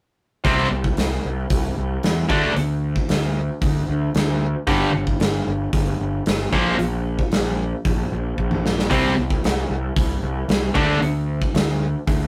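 Hard rock with a powerful, energetic drive, this rough rehearsal-room cut sets a high-gain distorted guitar riff up front over a tight distorted guitar further back, while a punchy, fuzz-laden picked bass and a gated 80s drum kit with a bright stone-room snap push hard, the kit breaking into a fill at 8.4 seconds as power chords move through C5, D5, G5 and Bb5.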